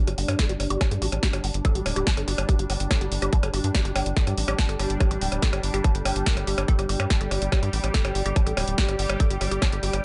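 Psychedelic trance excerpt with a driving, alien mood, built on an up-front electronic kick and a tight, punchy sequencer bass with tube saturation, while a techno drum kit of punchy snare, tape-warm hats and percussion blips joins a woody wave-folded pluck riff with chorus and delay, a bubbling stepped-filter texture of resonant sustained chords with sidechain pumping, and, from 1.4 seconds, a very quiet, deep, moody ambient pad, all in a dry, dark-toned mix.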